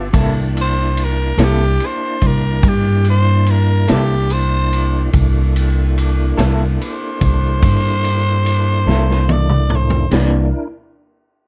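Swaggering and rollicking, this slow blues excerpt in 12/8 at 48 BPM features a raspy, growling tenor saxophone solo with plate reverb entering at 0.6 s, set over a woody, pizzicato upright bass up front, a slightly broken-up electric guitar with tremolo through a small old amp, and a tonewheel organ holding clean sustained chords through a slow rotary speaker with audible key click, while a punchy vintage drum kit with dark cymbals plays a fill from 8.9 s, inside a dark, lightly reverberant production as the harmony moves from C13 to C9 at 10.1 s.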